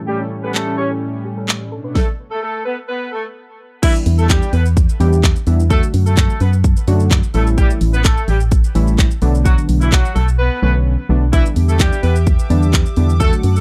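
Mellow, detuned analog keys with chorus, tremolo and sidechain pumping open this confident, driving dance-pop excerpt at 128 BPM in E dorian, alongside a shimmering pulse-width pad and a soft, round pluck arpeggio in the background; they are soon joined by a distant horn-section melody with light vibrato and tape echo and a punchy, up-front electronic drum kit with a fat snare and handclaps, before a hollow, dark FM bass arrives at 4.1 s for the drop, the drums fall silent at 10.4 s, and the pad returns at 11.3 s, all within a dry, close 1970s-style studio sound.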